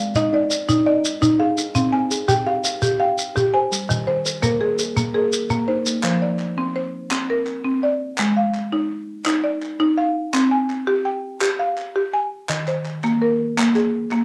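Southern African traditional music in an interlocking mbira-style cycle, with a trance-like, hypnotic pull in a straight 12/8. A buzzing marimba struck with medium hard mallets sits up front throughout, its woody, dry arpeggios sounding from hardwood bars. A mellow, hollow-bodied kalimba plucks soft, airy arpeggios alongside it until it drops out at 6.4 seconds, while a grainy shekere shakes in a live room until 6.0 seconds. From 6.0 seconds, crisp, human group handclaps take over the percussion, and the whole home cassette recording carries a short studio reverb, tape colour and lossy compression artefacts.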